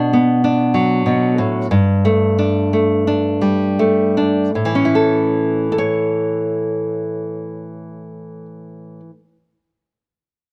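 Close, detailed miking and light reverb frame this peaceful folk excerpt in A mixolydian, a solo fingerpicked nylon-string guitar with a dark, fresh-stringed classical tone sitting up front at a straight 4/4 pulse of 76 to 99 BPM, easing into a slowdown over the opening 4.5 seconds as it moves from Bm to Gsus2 before settling on A when the second section begins at 4.5 seconds.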